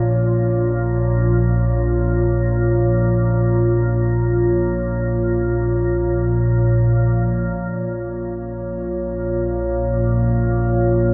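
An organ-like drone sits up front for the whole 11.1 seconds, a calm, detuned unison of sine tones with a slow attack and long release, thickened by ensemble chorus and its own built-in reverb. Above it, a deep, moody analog pad holds sustained Bb minor chords. The pad blends square, sawtooth, triangle and sine waves with a sub octave and a wave-folded edge, softened by lush chorus. The pad fades out over the first 7.5 seconds. This unsettling dark ambient drone moves in free time and is cut from a longer piece. The dreamy mix is soaked in a huge reverb with a 7.7-second decay, which gives the sound a cavernous, shadowy depth.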